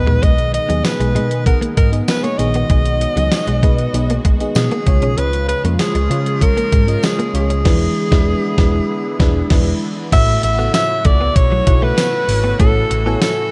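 Romantic and uplifting, this 1980s-style pop fragment at 97 BPM in straight 4/4 sets a bright, vibrato-laden alto saxophone melody with delay up front over a lush, dreamy FM electric piano with a soft pad layer, an airy, detuned sawtooth pad in the background, a round hollow-body picked bass, a compressed clean guitar riff recorded direct with chorus and delay, and a thumpy 12-bit drum machine joined by a jingly tambourine from 0.8 s, with a band accent from 7.7 s to 10.1 s leading into A major at 10.1 s, inside a dark production with light reverb.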